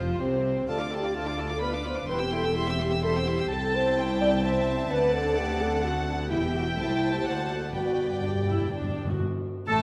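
A wet, reverberant scoring-stage sound surrounds this lively, cheerful excerpt from a quick classical-period orchestral movement in 3/4 at 127 BPM, moving from C major to G major at 3.5 s. Intimate, close chamber strings bowed sul tasto with soft attacks carry it: violins take the melody and a second line, violas accompany, and dark cellos sit in the background beside the double basses on the bass, while a mellow French horn section holds prominent sustained chords. Timpani struck with hard mallets sound crisp and dry, returning for a fill at 7.7 s, and at the very end a clear oboe, a smooth clarinet and an airy, distant flute add brief second lines.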